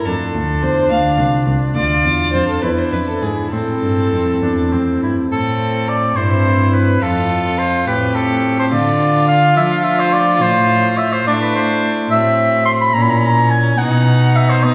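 Set back on a roomy, reverberant scoring stage, this solemn, flowing baroque-style sonata movement in 6/8 moves with an unhurried, rubato feel and is cut from a longer piece. A warm oboe with light vibrato carries the melody up front, joined by a bowed solo violin with a rich, gut-string period tone on the second line, while a reedy period cello anchors the bass and a pipe organ's thick foundation stops fill in the continuo with romantic voicing. A new passage opens at 5.3 seconds, and the harmony moves through half-diminished chords toward the close, settling on a B chord.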